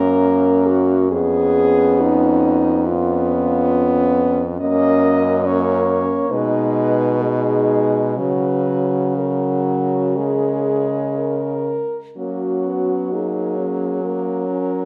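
A moderate recital-hall reverb surrounds this serene, lyrical classical excerpt for horn quartet in F# major, moving in a rubato 4/4 at 59-72 BPM. A mellow, soft-attacked French horn carries the melody from a distant, roomy position, while a warm second horn sits in the background. Two clear-toned horns fill out the accompaniment and the bass, with the bass horn up front and shaded with vibrato.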